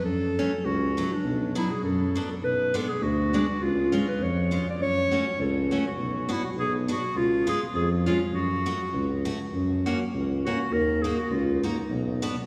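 Swung eighths in 2/4 at 102 BPM drive this festive, jolly alpine dance-band fragment in F# minor, where an up-front, warm, classical-style clarinet carries the melody over a mellow tuba bass with light vibrato, joined at 0.4 s by a bright, picked steel-string acoustic guitar accompaniment, the band sitting in the wet, cathedral-like reverb of a church or concert hall as a new section at 9.5 s opens on an F# major chord.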